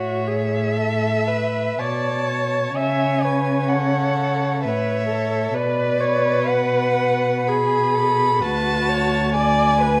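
Classical string quartet music in a slow, tender romantic movement, flowing in three with a rubato feel, heard as a short cut from a longer piece in a moderate recital hall reverb. A dark, smooth first violin carries the melody evenly and with vibrato, while a distant second violin adds a second line and a viola provides accompaniment, both warm and expressive, with vibrato, and sliding between notes with portamento. Underneath, a rich, up-front cello holds the bass as the harmony moves from A through A/C# to Bm and Bm/D.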